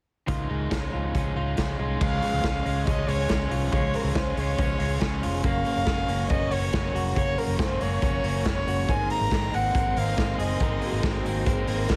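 A raw garage drum kit sits up front, its punchy kick, medium-tuned snare and dark cymbals saturated and gritty in a pumping small room with a rolled-off top. This jangly indie pop excerpt feels nostalgic and youthful, with an overdriven semi-hollow guitar picking a bright hollow-body accompaniment while a clean, twangy, direct-recorded electric guitar picks arpeggios beside it. A foam-muted fingered electric bass adds a round, dark, amped low end beneath the chords moving from Dbadd9 through Db and Gb to Abadd9. At 2.0 seconds a dark, bowed violin enters with a soft-attack, sul tasto melody that floats smoothly above, joined by a very quiet studio string section holding focused sustained chords with vibrato. Near the close, at 10.8 seconds, a mellow vibraphone with soft mallets and fast motor vibrato rings in the background through tape echo, all under light reverb and a heavily compressed, radio-like sound.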